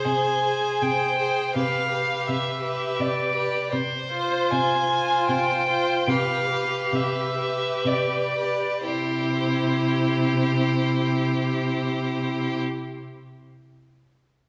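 A string quartet opens together in a tender, serene classical passage, a slow romantic movement in triple metre, taken from a longer piece and shaped with a flexible rubato feel. The first violin carries the melody up front with a rich, expressive tone, singing with vibrato and gliding portamento, yet heard with a slightly distant quality. Beneath it, the second violin adds a bright, intense second line, while the viola supplies a smooth, even accompaniment. The cello, entering at 0.1 s and also placed up front, anchors the bass on a single low C with a clear, focused sound. The harmony moves through Abmaj7/C, G7/C and Fm/C over a held C in the bass, the music slowing down from 2.6 s before settling onto a C major chord at 8.9 s, where a brief new section begins. The quartet sits in the generous reverberation of a church or concert hall, which lends the bowed strings a soft, glowing halo.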